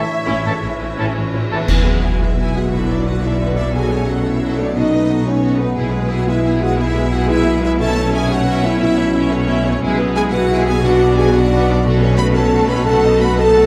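Drenched in hall reverb, this heroic adventure film cue in B dorian moves at 118 BPM in a straight 12/8, determined and adventurous from the outset as a flute section, mellow oboe and very quiet bright clarinet sound briefly beside ringing thumb-plucked harp arpeggios. Very quiet bright trombones hold brief chords while a punchy, distant trumpet adds short stabs, before dark cymbals and bass drum strike an up-front accent at 1.7 seconds. Throughout, a focused violin section carries the melody over a smooth second violin line, with lush violas, cellos and double basses below from 0.3 seconds and a roomy French horn section holding dark chords from 0.5 through to 13.7 seconds.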